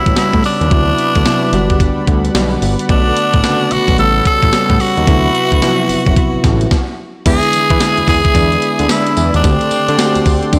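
Swung sixteenths drive this slick, punchy new jack swing R&B excerpt, where a clean 12-bit drum machine with thumpy kick, snare, hi-hat, tambourine and crash joins a fat, detuned analog bass just after the start, soft, round electric-piano-like synth keys with chorus and slapback echo comp beneath a raspy, gritty tenor saxophone melody up front, a brassy analog pad with chorus sits in the background, and a brief stop at 6.7 seconds sets up a new section at 7.3 seconds, all in light reverb.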